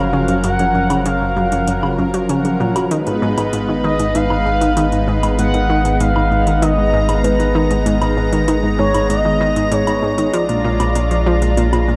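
A steady, straight 4/4 pulse at 97 BPM drives this expansive, luminous stretch of sequencer-driven ambient space music, cut from a longer piece and moving from F#maj7 to G#m and then A#7. A nasal, wave-folded analog pluck riff and a deep, dark analog bass sit beneath a thick, airy unison pad held up front, while a smooth, expressive synth lead with vibrato carries the melody through lush chorus and tape echo. Metallic, overdriven electronic hi-hat and woodblock with tape echo enter at 0.3 s, and the echo-heavy mix sits in a moderate plate reverb.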